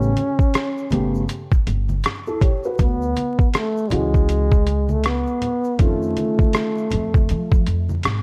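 A mellow trombone carries the jazz-style solo melody from the start, its vibrato, scooped notes and soft attack sitting up front with a slapback echo, over a dark, boxy concert grand piano, a woody pizzicato upright bass and bright, saturated egg shaker and congas in the background. At 0.2 seconds a gritty, pitched-down boom bap drum kit joins with a thumpy kick, hi-hat and rim click, driving this cool, mellow jazz-hop cut at 80 BPM with a swung 16th-note feel. The harmony moves from A9 to a rootless Dmaj9#11 and on to F7b13, all set in a small room with a dark production and a bed of vinyl crackle.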